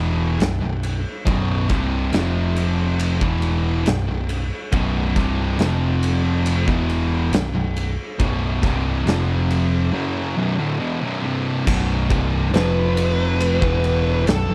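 Heavy and brooding, this stoner and doom metal excerpt crawls at 69 BPM as a double-tracked, overdriven electric guitar and a thick fuzz guitar grind out a riff around B5 and F5 over a growly, up-front overdriven bass from the start. They are joined by a punchy, gritty oversized low-tuned drum kit with dark cymbals in a pumping big room from 0.4 seconds, a second background fuzz guitar riff at 4.7 seconds, and a compressed fuzz lead guitar with wah and tape echo whose solo melody arrives at 12.5 seconds, all with little reverb.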